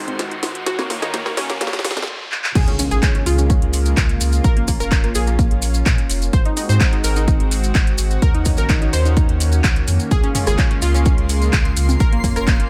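Progressive house excerpt, expansive and bittersweet, where a lush detuned unison pad, a detuned sawtooth analog pluck arpeggio with dub echo, a twinkling granular texture, a background riser and impact, a house kit with cracking snare and metallic hats, and an overdriven analog drum machine of congas, rim click and toms build through filter sweeps to a stop at 2.1 seconds. The drop at 2.6 seconds brings in a round, deep analog bass, an up-front punchy kick and grainy close maracas, while the pad, pluck and bass pump under the chords that cycle from Ab7 through Ebm7 and Db6 to Bbm.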